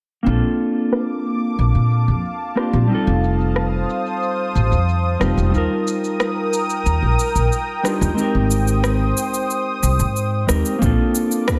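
A mellow, clean electric guitar opens this smooth, sunny sunset chillout excerpt at 0.2 seconds, played fingered and up front with a dark tone softened by a low-pass filter and trailed by digital delay. An acoustic upright bass and a layered electronic shaker and rim click join at 0.3 seconds in a straight 4/4 at 91 BPM in Bb major. The pizzicato bass sounds woody and thumpy, sitting up front, while the overdriven percussion carries a filter sweep and studio ambience. A lush, thick sawtooth pad with a slow attack and chorus enters at 0.8 seconds, its detuned unison voices holding sustained chords through Bbmaj7, F7, Eb and Abmaj7. At 10.8 seconds a punchy, overdriven electronic kick drum arrives as the harmony returns to Bbmaj7, with light reverb on the mix.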